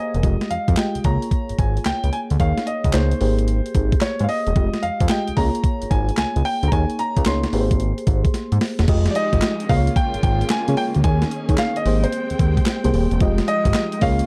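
A swung sixteenth-note groove at 111 BPM in 4/4 drives this slick, punchy new jack swing excerpt in F minor. Up front, a clean 12-bit drum machine with a sampler-style, tape-tinged sound lays down a thumpy kick, medium-tuned snare, handclaps, hi-hat and crash. Beside it sits a fat analog bass with a thick, detuned blend of sawtooth and square waves and a moving notch filter. A polished, present grand piano carries the melody in its upper register, while an FM electric piano adds mellow, warbling vintage accompaniment with a noise layer. The harmony cycles through Fm9, Db6, Eb7sus4 and Abmaj9, and after a drum fill at 8.3 seconds a lush, bowed string ensemble enters in the background at 8.9 seconds, with vibrato and portamento. Digital ambience gives the production a dark, warm finish.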